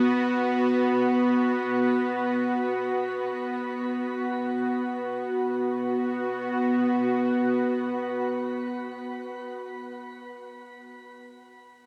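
Soaked in a long, wet shimmer reverb and carrying the soft grain of cassette tape, this ambient fragment of a longer piece feels reflective and melancholic. A single bowed-like drone holds the whole 9.6 seconds alone and up front, a string-like, tense tone of sawtooth and sine with a wave-folded edge, a noise layer, vibrato, its own reverb and a tape echo, ranging from B3 to F#4 over a B5 chord. It enters with a slow attack, sustains with a long release, and moves into a new section at 5.3 seconds.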